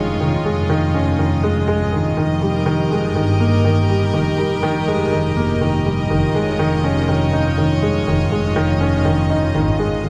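A moderate scoring-stage reverb with a touch of small-room ambience gives this short cut from a longer piece an enclosed, glowing space. It is moving, hypnotic piano-and-strings electronica in a straight 4/4, built around a riff on a felt-muted upright piano that sits up front, its mellow, intimate tone passed through a low-pass filter and trailed by digital delay. Beneath it, a distant symphonic double bass section carries the bass line, bowed, dark and woody, with lush vibrato. Above, a chamber string section holds rich, earthy chords with light vibrato and a smooth top. The harmony moves from Dbadd9/F to Fm11 at 2.2 seconds and returns to Dbadd9/F at 6.1 seconds, with all three parts playing throughout.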